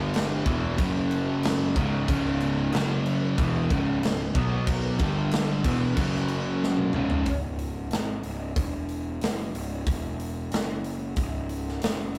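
Heavy and sludgy, this stoner and doom metal excerpt opens on a double-tracked, biting overdriven guitar riff up front, shadowed by two dark fuzz guitars, one very quiet and one in the background, over a bright, growly fuzz bass and a punchy acoustic rock kit with bright cymbals, until a drum fill at 6.6 seconds leads to 7.3 seconds, where the guitars drop out and the bass and drums carry on in a rough rehearsal-room sound.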